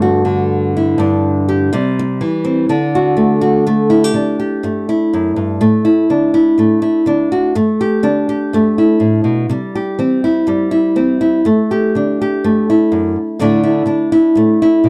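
Danceable and carefree, this short highlife passage, cut from a longer piece, moves at 123 BPM in 4/4 with a light swing on the sixteenths. A lone nylon-string guitar carries everything, fingerpicked and sitting up front with a small, warm, acoustic character, spanning from F#2 up to G4. The harmony opens on Gsus2 and passes through C and D before a new section begins at 3.7 seconds, where it circles between Gsus2, Dsus2/A and C. The instrument is tuned slightly low, to A4 = 436 Hz. The sound is a dry, close 1970s-style studio recording with a moderate studio reverb, and the passage runs to 14.9 seconds.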